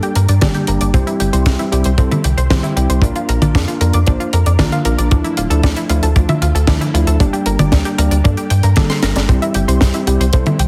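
A straight groove drives this bittersweet, danceable italo disco excerpt, with a dry, tight acoustic kick arriving at 0.4 s beside a tight funk drum kit of hi-hat, high-tuned snare and toms set in small room ambience. A drum fill breaks the pattern at 8.8 s. Up front, a punchy sequencer bass enters at 0.2 s, its sawtooth and square-wave tone sharpened by a filter pluck, a moving notch and tube saturation. Above it, a round analog pluck plays arpeggios with a sub octave, chorus and tape echo, while a bell-like tine electric piano adds clean, direct stabs through its own tape echo. The harmony moves through Gm, C, Bb and Dmadd9 under light studio reverb, and the whole mix carries a heavily compressed, radio-style sheen.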